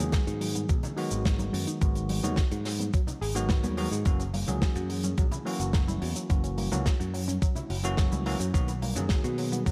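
Nu-disco in G# minor at 107 BPM, this sleek, sensual excerpt rides a thumpy, tape-warm electronic kick sitting up front, with a modern studio kit adding hi-hat, cabasa and a medium-tuned snare, while very quiet congas with soft hands come in at 0.6 seconds. A growly, bright picked electric bass anchors the G#m7 to F#7 to Bmaj7 changes beneath a bell-like tine electric piano, both electric piano and a round, detuned analog pluck arpeggio pumping with sidechain and trailing digital delay. The pluck, chorused and set in the background, carries a filter sweep throughout, all within a dark production and a light, small-room reverb.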